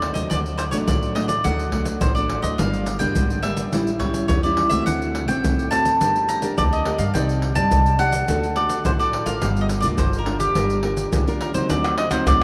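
A straight 4/4 samba-and-choro groove at 105 BPM, driven by a vintage, band-limited kit of pandeiro, tube shaker, deep surdo and hard-handed tamborim, carries this lively, bittersweet G minor fragment from a longer piece, where an up-front, round, double-string picked mandolin sings the melody over fingerpicked classical nylon-string guitar and a woody, growly pizzicato upright bass, all bathed in a vast cathedral reverb as the harmony moves through D, Gm, A7 and Cmadd9 before arriving on a D7b9 at 11.7 seconds.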